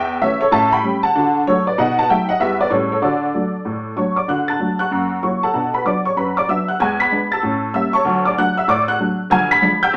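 A detuned, jangly honky-tonk upright piano sits up front, playing solo through the whole 10-second fragment of an exuberant, swinging stride jazz tune at 192 BPM in 4/4 with a swing feel on the eighth notes. Ranging from D2 to B6 in D major, its bright, short-sustained vintage tone carries two passes of the same section, the second beginning at 4.3 seconds, moving through chords such as B7, F#7, Bm7 and A7b9 before landing on D. A short studio reverb adds a wet sheen around the piano.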